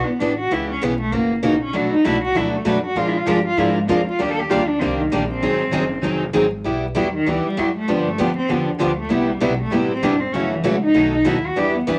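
A swung 4/4 pulse at 196 BPM drives this playful, charming stretch of acoustic string swing in the gypsy-jazz manner, cut from a longer piece and moving through a colourful chord progression from Em7 to B7. A bowed cello with an earthy, nasal tone and light vibrato takes the solo throughout, backed by a boxy parlour guitar picking bright accompaniment and a pizzicato upright bass with a woody, thumpy gut-string sound. A second picked guitar, a fresh-stringed dreadnought, joins the accompaniment at 1.7 seconds, and the whole piece sits in a wet small-room reverb with a layer of vinyl crackle.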